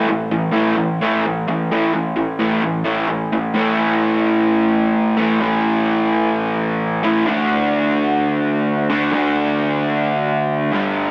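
Rock excerpt, swaggering and brooding, where a lone raw garage guitar, electric, overdriven, picked and lo-fi, sits up front and double-tracked with analog delay in a moderate plate reverb, moving from A5 to D5 at 7.3 seconds.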